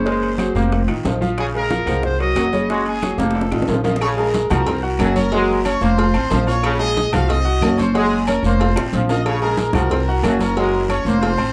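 Set in a small, reverberant room, this passionate, fiery salsa opens with a distant, vibrato-laden solo trumpet on the melody until a clear trumpet section takes it over at 3.9 seconds, while a punchy, vintage trombone section carries a second line, a brilliant grand piano with audible action noise supplies accompaniment over an up-front, thumpy gut-string upright bass, ringing congas, tight high-tuned bongos and cowbell, metal-shell timbales and agogo bells and a raspy guiro sit in the background, very quiet woody claves tick along, and drum fills arrive at 3.2 and 8.8 seconds.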